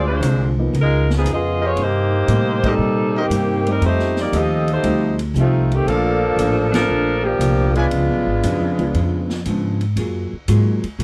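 A mellow, vibrato-rich saxophone section carries the melody up front in this joyful, brassy big band swing excerpt, joined from the start by clear trumpet-section stabs, a dark, clean hollow-body archtop guitar and a woody, pizzicato upright bass. A distant, roomy drum kit with a boomy kick and a baby grand piano in the background come in moments later. The full band hits accents at 2.5 and 6.6 seconds, and the trumpets drop out at 7.9 seconds while guitar, bass and drums play on under light reverb.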